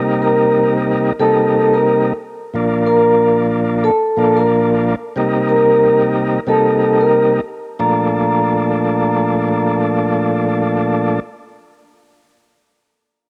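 A ringing, mellow vibraphone played with soft mallets carries the melody from 0.2 to 9.7 seconds, its slow motor vibrato colored by cassette tape and an analog delay. Beneath it, an up-front tonewheel organ with audible key click and a fast rotary speaker lays down smooth chords that move between Cm7 and Bbmaj7, also passed through cassette tape. This confident, nostalgic hip hop fragment in Bb major sits at 91 BPM with a swung 16th feel, cut from a longer piece, and has the intimate character of a home cassette recording dressed in light studio reverb.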